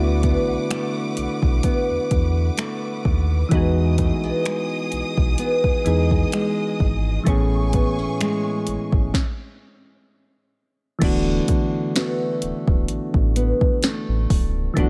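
The recording is dry and close, with the drums set up front, in a short cut from a longer contemporary R&B piece that feels dreamy and romantic at an unhurried, lightly swung pace. A round, mellow electric-piano-like synth with gentle chorus carries the accompaniment, while a dark, fingerpicked nylon-string guitar plays classical-style arpeggios through a digital delay, its finger squeaks audible. A deep sine sub bass with an added octave holds the low end with full, sustained notes. The electronic drum kit pairs a soft kick and sharp snare with finger snaps, hats and a crash, given a gritty overdriven edge and the feel of a small room. A lush, bowed string section adds smooth, vibrato-rich chords over the D6, Emaj7 and Amaj7 harmony until 9.1 seconds, and after a stop the groove returns on D6 at 11.0 seconds.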